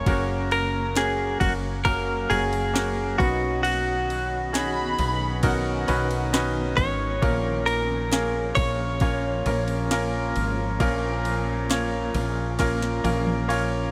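At a slow 67 BPM in a straight 4/4, a smooth R&B drum kit sets an unhurried pulse with a soft kick, sharp snare, ride cymbal and toms, its electronic, tape-warm sound ending the brief excerpt in a drum fill from 12.6 s. This tender, hopeful pop ballad moves from F# to Badd9 and then A#m. A woody fretless electric bass sits up front, round and punchy with an analog chorus, while a bright grand piano carries the accompaniment with long sustain and audible action noise that make it feel intimate. Over them a clean, direct-recorded electric guitar plays the melody, twangy, compressed and scooped, and a shimmering ambient pad hovers in the background with ethereal octave-up shimmer, chorus and its own reverb. A dark, lush studio violin section adds a bowed second line with vibrato, heard only between 4.5 and 6.5 s, and a light reverb gives the whole ensemble a gentle sense of space.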